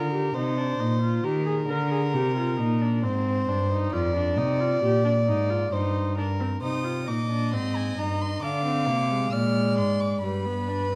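In a straight 4/4 at 67 BPM, this lively, elegant baroque-style fugue for string quartet in Eb major, tuned to A4 = 436 Hz, sets an up-front dark cello with light vibrato beneath a warm viola and a close, up-front second violin with an airy bow, all bowed on gut strings in period style, before a rich, reedy first violin takes the high melody at 6.6 s, the quartet heard in a wet recital hall reverb in this passage cut from a longer piece.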